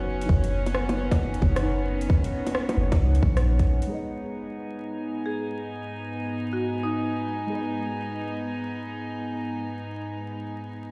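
Muted felt-like synth keys, a warm bowed string section, a drifting glassy texture and a deep, round 808-style bass open this ghostly, melancholic future garage excerpt in G# minor at 133 BPM with a 16th-note swing, where a tight, up-front electronic kick and an overdriven garage kit of bongos, metallic hats and rim click play briefly until 3.9 seconds, after which the harmony shifts from Badd9/F# to G#m, a filter sweep washes over the strings, and a dark, smooth marimba melody with analog delay surfaces in the background from 5.3 seconds, all heard through stone-room reverb and vinyl crackle as if played on a big sound system in a bare room.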